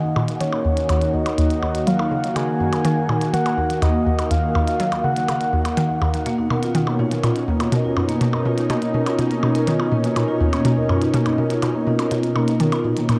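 Ambient, sequencer-driven space music at 123 BPM in Eb minor, this hypnotic, mysterious fragment of a longer piece sets a hollow, bouncy square-wave pluck riff, chorused and tape-echoed, beneath a thick, warbling sawtooth pad that sustains chords moving from Ebmadd9 to Badd9 at 6.3 seconds. A dark, round octave-layered synth lead with vibrato and tape echo carries the melody until 6.0 seconds, while clicky electronic blips and hi-hat tick quietly in the background. At 6.3 seconds a mellow, close-miked vibraphone with soft mallets enters with ringing arpeggios, all set in a huge ambient reverb with a vintage cassette tape character.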